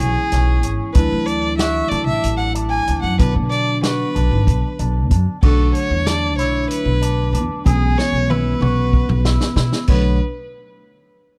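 A dry, close 1970s-style studio sound with small room ambience frames this tense, driving progressive instrumental, cut from a longer piece and moving in 7/8 at 188 BPM (eighths) with a straight feel in B dorian. Up front, a woody upright bass with gut strings plucks a thumpy low line, and a vintage drum kit with dark cymbals, a punchy kick and a rolled-off top joins at 0.3 s, working crash, hi-hat, snare and toms before a drum fill from 8.0 to 9.9 s. A rich, biting violin carries the melody with vibrato and a smooth top, its single bowed voice trailed by tape echo. A metallic, ringing vibraphone played with medium mallets and the motor off adds a second line, while a clean, compressed electric guitar through an envelope filter picks twangy arpeggios. A tine electric piano heard through a combo amp sits in the background as accompaniment, moving through chords such as C#m7/B, D, Bm and Bm7.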